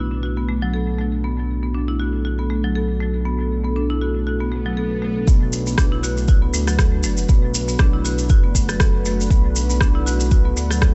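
Driving and spiritual, this afro house excerpt opens on a moody, detuned analog pad and woody hard-mallet marimba arpeggios carrying dub echo over a smooth sawtooth synth bass, all pumping against the sidechain on a Bm7 chord, until a background swell gives way at 5.3 seconds to a deep, tape-warm kick up front, grainy acoustic maracas and, from 5.8 seconds, an electronic rim click in a dry, dark mix.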